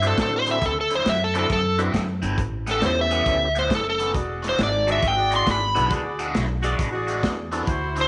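A swung shuffle in 4/4 drives this laid-back, rollicking electric blues excerpt, cut from a longer piece. An overdriven slide guitar sits up front with the solo melody, its fingered lines carrying a slapback echo, while a crunchy, bright guitar picks a riff through a phaser. Beneath them, a pizzicato upright bass on gut strings gives a woody, thumpy low end, and a small-room breakbeat kit sounds dark and saturated, with a tight kick, a medium-tuned snare and a rolled-off top. A gritty tonewheel organ fills in the accompaniment through a slow rotary speaker and chorus vibrato, with second harmonic percussion, until it drops out at 7.7 seconds. At 4.1 seconds a mellow, smooth-topped horn section arrives with jazz-style stabs and light vibrato, over chords moving through D9, A9 and E9 in a light reverb.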